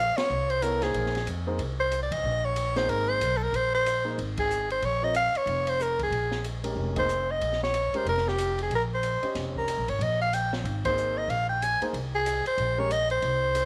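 Modal jazz with a hypnotic, searching mood, swinging briskly in four and cut from a longer piece. A growling soprano saxophone carries the melody up front, its close-miked tone raspy and gritty yet clear, with subtone, vibrato, soft attacks and scooped notes. An upright bass, plucked on gut strings, gives a woody, thumpy low end, while an acoustic drum kit of hi-hat, kick, ride and snare sits further back with dark cymbals, a high-tuned snare and a boomy kick. A concert grand piano with deep bass and a natural sound enters at 0.6 seconds to comp beneath the horn, and the band hits shared accents through the passage as the harmony moves from Ab/Bb to Bbm7 and settles on Ab at 10.0 seconds. Light reverb and a small room ambience frame the playing.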